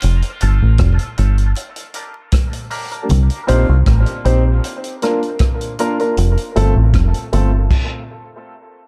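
Dub reggae at 78 BPM, meditative and hypnotic in an echo-heavy mix, where a dark, round fingered bass and a vintage kit with a punchy kick and dark cymbals sit up front, very quiet close congas play until 3.3 s, a bright, twangy envelope-filtered guitar flickers at 0.4 s, warm grand piano stabs with short sustain carry the dub echo over F, Gm, Cm and Bb, a horn section with light vibrato slips in at 3.5 s, and the band stops at 7.7 s.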